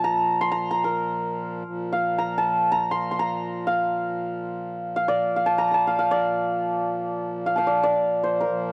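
This is Hindustani classical music, a short, devotional and radiant passage cut from a longer performance. A hammered santur carries the melody up front, its mellow, shimmering tone ringing out across the upper register. Beneath it, a pedal harmonium holds a reedy, breathing drone, set mid-forward in the mix with a gentle warmth. Both instruments sound together from the opening moment through to 8.7 seconds. The sound is dry and close, in the manner of a 1970s studio recording, so the acoustic santur sits up front and present.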